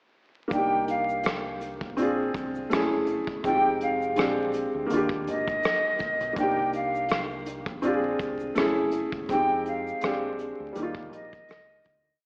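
A nostalgic, mellow lo-fi hip hop piece at 82 BPM in Eb major, where from 0.5 seconds a breathy, hollow jazz flute loops a short melody over held rootless chords on a felt-muted upright piano with grace notes and cassette-tape grit, a sparse, round dub bass line with slides and chromatic approach notes, a slumped, off-grid brush drum beat with a tight kick and rim click, and very quiet grainy shaker sixteenths, all soaked in plate reverb, vinyl crackle and an AM radio tint before fading out from 9.3 seconds.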